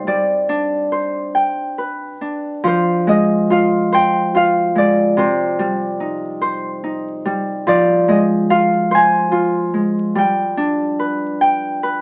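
Children's lullaby music in a dreamy, wistful mood, this brief rubato passage in 6/8 features a solo Celtic harp, thumb-plucked and ringing, up front in a small room with moderate reverb and a layer of vinyl crackle, its chords drifting from Gsus4 to G before settling into Fm, Cm and back toward G by 10.2 seconds.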